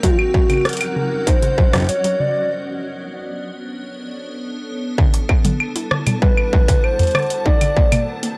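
A distorted, up-front electronic kick and a booming analog drum machine of claves, metallic hi-hats, rim clicks and toms drive this eerie, melancholic IDM excerpt at 97 BPM in straight 4/4 in E minor, where a mellow, lo-fi pluck spins arpeggios beneath a crystalline, slow-blooming glass pad and a faint, flickering granular texture, while a wave-folded nostalgic lead with vibrato and tape echo sings its melody until 2.5 seconds, falls out for the break, and returns at 6.2 seconds, all captured as a dry, gritty hardware recording on cassette.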